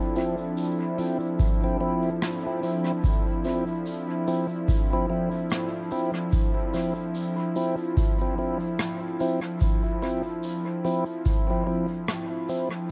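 Dark, lightly reverberant and deep, this spacious ambient dub excerpt in a swung 4/4 feel rests on a single Dm9 chord held by a detuned, warbling analog pad with subtle chorus, while a fat tonewheel organ plays stabs through a slow rotary speaker and dub echo, a brushed, small-room shaker and rim click carry their own dub echo, and an up-front, tape-warm electronic kick drum enters at 1.4 s and stops at 11.5 s.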